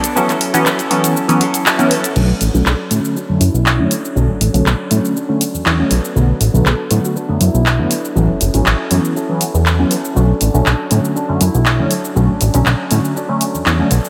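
Filtered disco house with a groovy, nostalgic feel, where a punchy analog drum machine with handclaps, hi-hat, shaker and crash cymbal drives a clean, compressed electric guitar riff and a mellow, phased polysynth comp, a plucky, wave-folded bass joins up front as a filter sweep begins at 2.2 s, and a jazz-style horn section with light vibrato and 12-bit sampler grit drifts in the background from 2.7 s, inside a dreamy mix soaked in plate reverb.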